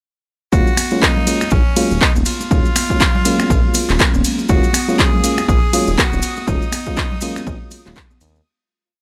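A raspy, gritty tenor saxophone plays motif-based call phrases with vibrato and tape echo over a smooth deep house groove in Eb minor at 121 BPM, where a punchy four-on-the-floor electronic kick, a layered kit of finger snaps, handclaps, hi-hat and ride, bright background congas and grainy maracas drive a swung 4/4 pulse beneath a mellow, round FM electric piano playing chorused, pumping rootless chord stabs on Ebm11 and a pumping sawtooth synth bass riff. Meanwhile, a very quiet, shimmering string machine of violins holds a high note from 4.5 s as the piece fades out from 5.8 s in a dry, gritty hardware sound.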